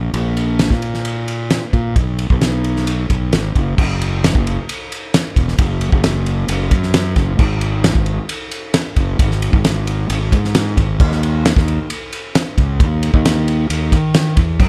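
Fuzzy, overdriven fingered electric bass opens this short cut from a longer math rock and midwest emo piece. It sits up front with a round tone that ranges from E1 to D#3. A loose indie drum kit joins almost at once at 0.1 seconds. The kit brings a fat snare, punchy kick and dark crash and ride cymbals, in a pumping studio room sound. The music moves in a straight 4/4 at 133 BPM in B major, wistful and intricate in mood. A shift to a new section arrives at 3.8 seconds, and the dark, warm production carries little reverb, keeping both parts close and direct through to 14.7 seconds.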